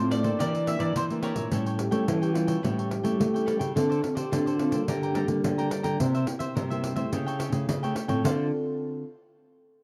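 A straight 4/4 samba-and-choro pulse at 107 BPM in D minor drives this yearning, lively excerpt, where jingly pandeiro played with soft hands backs a crisp picked cavaquinho, an up-front fingerpicked nylon-string guitar with finger squeak, and a small thumb-plucked nylon-string guitar on bass, while a woody, double-strung mandolin with slapback echo carries the melody until 3.2 seconds and a mellow trombone with light vibrato and scooped notes enters at 1.8 seconds as a background second line, set in a dry, close 1970s-style studio sound.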